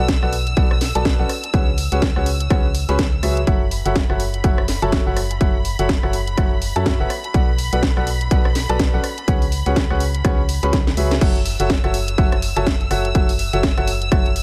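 A lush, bowed violin section holds sustained chords high above a clear, boxy baby grand piano riff and a hollow, organ-like FM bass, all three pumping with sidechain from the opening of this soulful, bittersweet piano house cut. The piano rings with long sustain and a touch of tape echo, while the dark, percussive bass carries tube saturation. An electronic kick and a house drum kit of crash cymbal, hi-hat, rim click and snare drum arrive almost at once, both overdriven and re-recorded in a large room, the kick punchy and the snare cracking. The groove swings on the sixteenths as the harmony moves through Bm7, C#7sus4 and F#m7. A drum fill from 10.7 seconds and a band accent lead into a drop at 11.2 seconds, where the harmony returns to F#m7. The mix stays dry, with the kick the loudest part.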